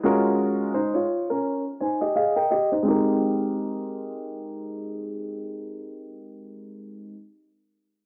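Smooth and cool, this short hip hop cut from a longer piece moves at 85 BPM in 4/4, with a 16th-note swing in A♭ major. A single warm, natural grand piano carries the accompaniment throughout, sitting up front and ranging from A♭3 to A♭5 behind a low-pass filter. It opens on a Gbmaj9 chord under a filter sweep, then plays a fill starting at 1.4 seconds, where the harmony drops out. At 2.9 seconds the music moves into a new section that settles on Abmaj9. A moderate echo chamber reverb gives the piano space, while the dry, gritty hardware and cassette tape sound adds a worn, lo-fi character.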